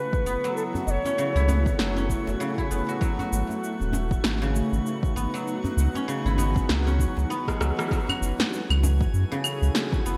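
A mellow cedar flute with a woody chiff opens this earthy organic downtempo excerpt, playing a tongued, straight-toned melody over a cloudy, slowly evolving granular pad. Silvery guzheng arpeggios picked with fingerpicks and a glassy texture of drifting overtones sit beneath it, and the flute falls silent after 2.1 seconds. Overdriven electronic drums arrive almost at once, re-recorded in a large room: an up-front deep kick alongside a punchy snare, cabasa, rim click and claves, with gated reverb on that upper layer. A round sine sub bass enters at 0.3 seconds and pumps with sidechain along with the pad, while a djembe with metal rattles stays in the background in a small room. Shimmer reverb and delay lend the guzheng a ringing trail as the harmony moves through minor seventh and extended minor chords, and a drum fill and band accent lead into a new section at 7.9 seconds, all framed by a bright 1980s-style digital sheen and a moderate, lush hall.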